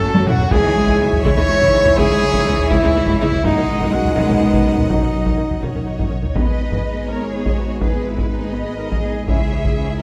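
Epic orchestral film score in a heroic yet dark 6/8, cut from a longer piece, where an up-front, saturated taiko ensemble pounds with heavy sticks and a quick fill at 0.2 s beneath mellow French horn and trombone sections holding sustained chords, a clear, distant solo trumpet firing stabs until 5.6 s, a lush background violin section singing the smooth melody over a close chamber violin second line, an expressive viola section with portamento accompaniment, and cello and double bass sections anchoring the bass, all set in a moderate scoring stage reverb as the harmony settles into G# minor at 6.4 s.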